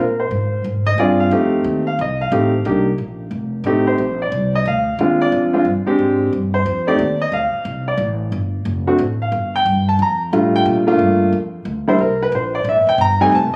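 Relaxed and warm, this jazz piano trio passage swings briskly at 180 BPM in 4/4, set in F mixolydian and tuned slightly low to A4 = 435 Hz, as the grand piano takes a natural-sounding, up-front solo across the full 13.6 seconds over changes moving from Bb7 through F7, Cm7 and Gm7 to C7(no3). Beneath it, a woody, pizzicato upright bass with steel strings sits close alongside, while a moderate echo-chamber reverb, a compressed sound and a phone recording made in the room lend a roomy, informal feel to this cut from a longer piece.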